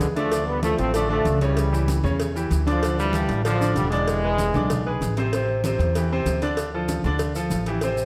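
A punchy, tight trombone section with vibrato carries a fiery, passionate salsa melody over a bright, open baby grand piano and a woody, thumpy pizzicato upright bass, while warm congas, a high-tuned cowbell and grainy maracas sit in the background. The harmony moves through Dm, C#dim and E7 before the trombones drop out at 5.0 s, leaving piano, bass and percussion to carry Am and Dm to the end of this cut from a longer piece. The whole ensemble is set in a large, wet studio reverb.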